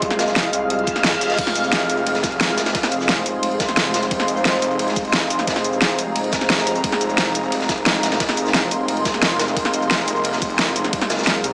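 Mechanical and futuristic, this 176 BPM dark technical drum and bass clip in F minor pairs an overdriven dubstep drum kit with a huge up-front snare, a knocking overdriven electronic kick, and a gritty, saturated breakbeat kit sitting in the background, over a thick detuned saw bass with chorus and tube saturation, a deep, moody ambient pad and an airy, breathy, warbling pad that both pump with the sidechain, plus a brief reverse cymbal from 0.8 to 1.4 seconds, all heard through a moderate digital room reverb with a small-speaker sound.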